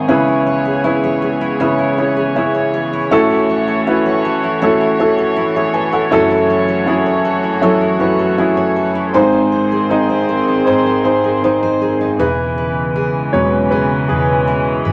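A wet studio reverb gives this short pop ballad excerpt a roomy glow, with a smooth, long-sustaining grand piano sitting up front. At a slow 79 BPM in a straight 4/4, the mood is longing and heartbroken, moving through C#m7, A6, F#m7 and G# before settling on E6. Beneath the piano's accompaniment, a picked steel-string acoustic guitar adds full-bodied jumbo arpeggios with audible finger squeak, while a studio string section holds bowed chords with light vibrato and a reedy, gut-string, period-style tone. At 12.2 seconds the grand piano steps forward for a solo passage, and a vintage muted fingered electric bass enters with a dark, round, punchy, amped sound that anchors the low end.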